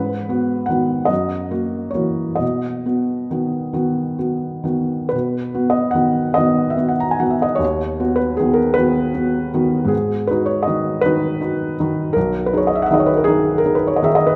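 A 12/8 pulse, felt in slow dotted quarters and stretched with a free rubato, carries this tender, nostalgic romantic nocturne for solo piano, heard as a short passage from a longer piece. A felt-muted upright piano plays throughout, sounding soft, mellow and intimate, placed up front as it moves from G#m7 through F#7 to B and later to B/D#, G#m7 and G#m/B. The piano sits in a reverberant recital hall that adds a long tail, and the dark, warm production deepens its hushed, wistful character.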